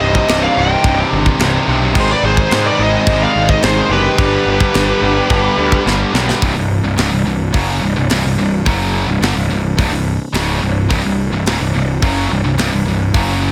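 Epic and dark, this heavy metal excerpt in C harmonic minor moves at 107 BPM in straight 4/4, opening over Cm, Ab and G with a warm, distorted lead guitar melody shadowed by a quieter second lead line through digital delay and a faint, chiffing pipe organ of flute stops holding baroque-voiced chords, while three high-gain rhythm guitars play a riff, two in the background and a third very quiet, beneath an up-front, growly fuzz bass and a tight studio drum kit with bright china, crash and hi-hat alongside kick and snare; the leads drop out at 5.8 seconds, a drum fill leads into a C5 at 6.4 seconds as the organ and one guitar stop, and the riff drives on under light reverb.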